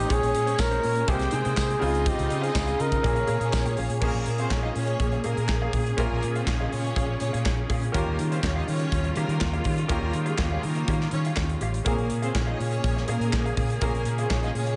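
A breathy flugelhorn opens this glamorous, sultry disco excerpt at 122 BPM in Bb dorian, its jazz-style solo line sitting up front with light vibrato and scooped notes before it falls away at 3.8 seconds. Beneath it, a lush bed of strings plays throughout: a rich studio section carries a second line with a smooth top, while a clear, distant symphonic section holds sustained chords in the background. A brilliant concert grand with a worn, intimate character, audible action noise and deep bass adds present accompaniment, joined by a dark, clean electric guitar treated with harmonic tremolo and tucked behind the mix. The fingered bass, bright and amped through an envelope filter, drives the low end alongside a polished, airy drum kit with a tight kick, medium-tuned snare, hi-hat, handclaps and crash, while a jingly, vintage tambourine appears only from 0.6 to 3.6 seconds. The harmony moves from Bbm9 through Abmaj7/C and Dbmaj7 to Bbm7, then settles on a long Eb9 before returning to Bbm7, all in a small room with light reverb and a softened top end.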